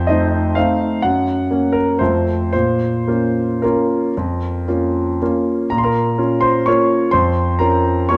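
A rubato waltz in 3/4, drifting between 108 and 135 BPM in B-flat minor, this playful, graceful classical excerpt features a clear, intimate concert grand piano alone from 0.0 to 8.2 seconds, its deep bass, long sustain and audible action noise sitting up front in a moderate concert hall reverb within a dark production, as the harmony moves from F7 through Gb and F to settle on B-flat minor.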